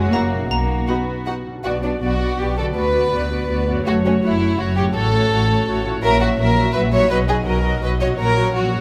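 A playful, whimsical cinematic film cue in a lilting triple metre, this short passage has a mischievous, storybook character. Two violin sections carry the tune: one sings the melody with a soft, floating sul tasto tone, while a second, more up-front line joins it with a pure, warm sound. A bright, sharp xylophone adds a dry, airy sparkle only in the opening 1.2 seconds, and a concert harp rings out fingerpicked arpeggios in the background throughout. Beneath them, violas fill in the accompaniment, and dark cello and double bass sections anchor the low end, the basses bowed with a woody vibrato. Close, detailed miking and light reverb keep the ensemble intimate and present as the harmony moves from B minor through F-sharp minor toward a dominant close.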